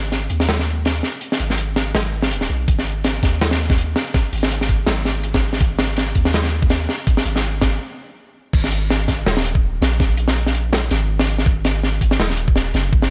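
A light reverb gives this heavy, cinematic cut from a longer half-time drum and bass track a sense of space. It moves at 164 BPM in 4/4 with a swung sixteenth-note feel. A deep, mellow 808-style bass holds long sustained notes around D#, each with a fast attack that then decays. A gritty, saturated breakbeat kit sits up front, with a medium-tuned snare, hi-hat and dark crash cymbals, its rolled-off top keeping the tone mid-forward. A layered, knocking electronic kick with a tape-warm character joins at 2.7 seconds during the build-up. The build breaks into a brief stop at 7.8 seconds before the drop lands at 8.5 seconds.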